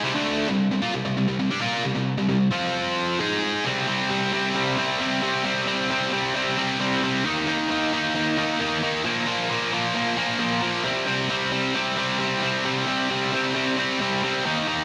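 Drenched in a lush hall reverb that gives a big arena sound, this heavy, aggressive rock fragment in C minor at 133 BPM features a bright, picked, double-tracked high-gain electric guitar up front with distortion and tape echo, moving through C5, F5 and Ab5 before a new section at 3.6 s carries it through Eb5 and Bb5 and back to C5.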